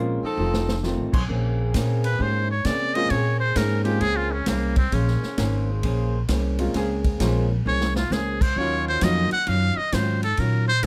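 A close, dry big band swing excerpt in Bb minor at 132 BPM, brassy and sultry, where a buzzy, metal-muted trumpet takes a scooped-note solo from 2.0 seconds over woody pizzicato upright bass, warm grand piano, clean hollow-body jazz guitar, a punchy swinging drum kit, a brief bright saxophone section line, a tight trumpet-section stab in the background at 1.1 seconds, and loosely sustained trombone chords until 9.3 seconds.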